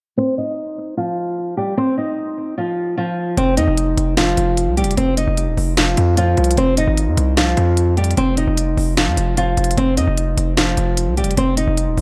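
A half-time trap groove in 4/4 drives this eerie, dark hip hop excerpt, though the beat holds off until 3.4 seconds. Until then, a dark, fingerpicked flamenco guitar plays alone from 0.2 seconds, opening on an F5 chord as a filter sweep passes over its acoustic tone and a tape echo trails behind it. At 3.4 seconds an electronic trap kit arrives with a sharp snare and crisp hi-hats, joined by a hard-hitting 808-style bass that is punchy, saturated and heavy, with a fast attack, a decaying tail and a noise layer over its sine body. The guitar and 808 both sit up front, carrying the melody and the low end together through to the cut at 12.0 seconds. A moderate plate reverb soaks the whole mix, giving it a dreamy atmosphere.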